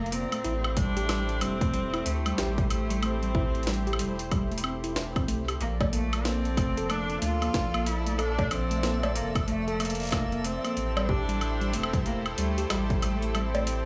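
A bright, bowed cello melody with vibrato and tape echo opens this cerebral, melancholic IDM excerpt in A phrygian. It sits over a detuned sawtooth pad with chorus, mellow tine electric piano arpeggios with dub echo, and a round, up-front sine sub bass, moving from Am7 to Bbmaj7 and back at 93 BPM with a swung 16th-note feel. A gritty, pitched-up jungle sampler-style kit of cowbell, hi-hat, snare and woodblock arrives almost at once and is joined at 0.8 seconds by a heavy electronic kick, both in small room ambience; a faint, twinkling granular FM texture with sidechain pumping sparkles in the background from 7.0 seconds, and the kick drops out at 13.3 seconds.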